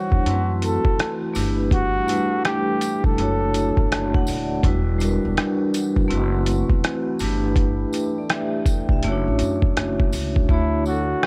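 Lo-fi hip hop at 82 BPM in D major with a swung 16th feel, cosy and mellow, taken from a longer piece. A breathy, whispered flugelhorn carries the melody up front with vibrato, returning at 10.5 seconds, while a bright, ringing vibraphone with slow motor vibrato plays jazzy chords such as G69 and Dmaj9 over a deep, detuned analog pad with chorus sitting in the background. A muffled, overdriven sampler-style kit with thumpy kick, hi-hat and rim click drives the groove alongside woody pizzicato upright bass and a faint jingly tambourine, with the hi-hats falling silent from 10.5 seconds.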